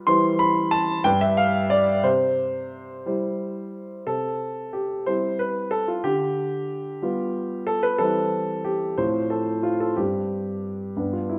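Cheerful and graceful, this short excerpt from a classical-period piano sonatina moves at an unhurried 61 dotted-quarter beats per minute in a straight 6/8, set in C major and tuned slightly low at A4 = 439 Hz. A warm, natural grand piano plays alone and sits up front, ranging from G2 to C6 across two statements of the opening phrase, with harmonies moving from C/E through G7/D and F/A before pausing on a Gsus4. A moderate recital-hall reverb gives the instrument an open, airy bloom around it.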